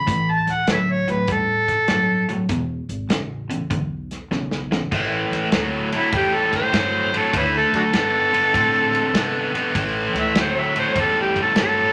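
An amplified, gritty harmonica leads this laid-back electric blues shuffle at 99 BPM, its vibrato, scooped notes and tongue slaps taking a jazz-style solo from 4.9 seconds over a bright, overdriven stack guitar riff, a woody, thumpy upright bass and a small-room acoustic drum kit with dark cymbals and a punchy kick that plays a fill just before the solo, all in a short excerpt cut from a longer piece.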